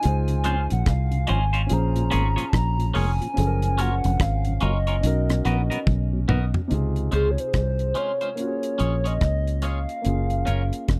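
Romantic and sweet, this lovers rock reggae excerpt sways at 72 BPM in Db major with a gentle sixteenth-note swing, moving through lush major-seventh and minor-seventh chords. A hollow, woody synth lead with a clarinet-like tone carries the melody from Ab4 to Bb5, its soft, full-bodied sustain colored by chorus, phaser, vibrato and tape echo. Underneath, a deep reggae drum kit with a tight, up-front kick, rim clicks, hi-hat and toms sits beside a round, foam-muted fingered electric bass that is dark and prominent. A dark, natural concert grand piano and a mellow tonewheel organ fill out the harmony, the organ sitting in the background with chorus vibrato and slow rotary speaker until it drops out at 6.6 seconds, as a drum fill from 5.9 seconds leads into the second section. Bright, clean, compressed stabs from a twangy electric guitar with phaser punctuate the groove, all captured in a dry, close 1970s-style studio sound.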